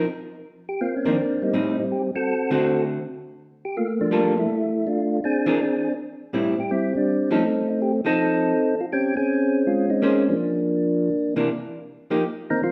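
A roomy, live-sounding jazz excerpt with a large studio reverb swings at 163 BPM in F mixolydian, its eighth notes lilting and its mood greasy. A dark, clean hollow-body electric guitar, picked and up front, carries the accompaniment from the start, while a mellow, round tonewheel organ with percussive third-harmonic attack and a slow rotary speaker takes the melody from 0.7 seconds. The harmony moves through rich extended chords, from F7sus4 through Gm9 and Bbm9, before settling on F9sus4 near 11.9 seconds.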